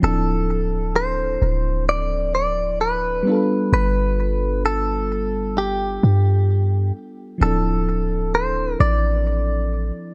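A clean electric guitar, bright and twangy with a touch of digital delay, leads this short slice of contemporary R&B. It carries the melody from the first moment over a soft, round FM electric piano whose chorus lends a warbling, vintage shimmer. Underneath, a deep, boomy 808-style bass sits up front, its sine tone decaying after each fast attack. At a slow 65 BPM in a straight 4/4, the harmony moves from Dm7 to G7 at 3.3 seconds and returns to Dm7 at 7.4 seconds. The bass drops out at 9.9 seconds, just before the guitar and piano close at 10.1 seconds. Dark digital ambience wraps the smooth, romantic mood in a warm production.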